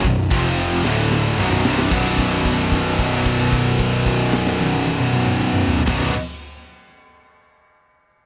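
A polished, roomy studio sound opens this relentless, aggressive heavy metal excerpt in B minor, cut from a longer piece and driving at 112 BPM in a straight 4/4. Three guitars carry the riff together: a scooped, high-gain guitar sits up front, a heavy high-gain guitar with distortion stands beside it, and a double-tracked, overdriven electric guitar fills in the background. Beneath them, a fuzzy, growly picked bass with overdrive sits low in the mix, while a tight metal kit with bright cymbals, a high-tuned snare and a tight kick adds crash, snare and tom hits. Power chords move through F, D and B while a drum fill runs from 0.8 to 1.9 seconds and lands on a B minor chord. That chord becomes a held note stretching to 5.9 seconds before the kit stops at 6.0 seconds.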